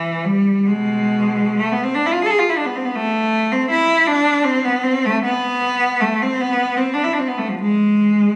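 Yearning and mournful, this short classical passage for unaccompanied cello is cut from a longer piece and runs 8.4 seconds. The tempo sits around 51 BPM in dotted quarters, in a 6/8 metre that moves freely, with uneven beats and expressive rubato. A single bowed cello carries the whole line, ranging from B2 to A4, with a rich, focused tone, a smooth top and vibrato. The instrument sits up front, surrounded by a moderate reverb like a scoring stage, with a decay of about 1.9 seconds. It was captured on a phone in the room, which adds a clubby ambience around the solo voice.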